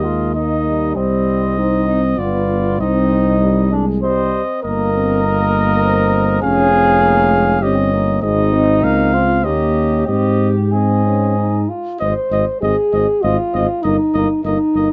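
Classical brass quintet in a triumphant, noble mood at 99 BPM in a rubato 3/4, settling into Ab major from 4.6 s, with a warm, smooth-topped trumpet carrying the melody over a mellow flugelhorn second line with light vibrato, a distant, roomy French horn and a clear, soft-attacked trombone in the background filling the accompaniment, and a dark, close-miked tuba up front anchoring the bass, all under light reverb.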